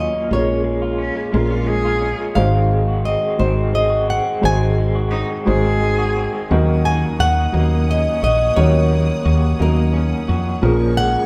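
A damp stone-room reverb surrounds this tender, heartfelt acoustic folk-pop ballad, which sounds like a band playing live together in one space, in a lilting 6/8 with a straight feel. A bright, fingerpicked flamenco guitar carries the melody up front, while a soft, felt-muted upright piano gives mellow, intimate accompaniment underneath. An electric guitar through a small old amp adds lo-fi, slightly broken-up, compressed arpeggios colored by tremolo, and a woody fretless electric bass sits dark, round and direct near the front of the mix. From 1.0 s a rich, focused cello played by one bowed player adds a distant second line with vibrato, giving way at 6.5 s to a chamber string section holding soft-attack sul tasto chords, close and hushed. The harmony moves from Bbm7 through Ab7 to Ebm7 before returning to Bbm7 as this passage, cut from a longer piece, breaks off.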